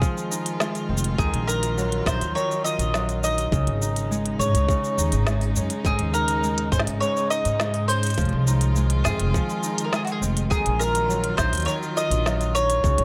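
Lightly reverberant and playful, this warm 103 BPM folktronica passage sets an up-front, round, double-strung mandolin melody with vintage 12-bit sampler grit and delay over bright, ringing fingerpicked Celtic harp arpeggios, distant bowed string quartet chords rich in vibrato and portamento, a tight tape-tinged electronic kick, and an electronic kit of snare, crisp hats, shaker and toms re-recorded in a large room, with a woody pizzicato upright bass joining at 0.9 seconds beneath chords moving from Fm7 through Ebmadd9, Dbsus2 and Absus4.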